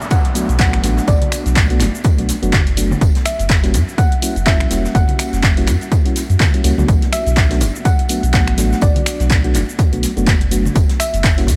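Deep house with a warm, late-night mood, swung on the sixteenths, opening with a background downlifter that ends at 3.0 s while an up-front, tape-warm electronic kick and a punchy analog drum machine of snaps, claps, hi-hat and shaker drive the groove, joined by a very quiet brushed jazz kit and, from 1.2 s, damped low-tuned congas. A mellow FM electric piano plays dark, full-bodied stabs with chorus, analog delay and sidechain pumping over a deep, round sine sub bass with tube saturation that pumps along with it. Above them, a soft, gentle pluck melody with chorus and delay drifts over a Bm7 to F#7b9 progression, all in a light reverb.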